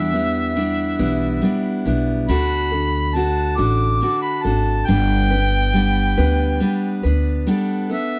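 A roomy harmonica with light vibrato carries the solo melody in this nostalgic, hopeful acoustic folk piece in G major, moving at a slow 46 BPM in a straight 6/8 over a bright, full-bodied picked steel-string guitar and a woody, thumpy pizzicato upright bass that drops out at 7.5 seconds, while the chords pass from Em7 through D and G to Gadd9 in a dry, close, small-room sound with a 1970s studio character.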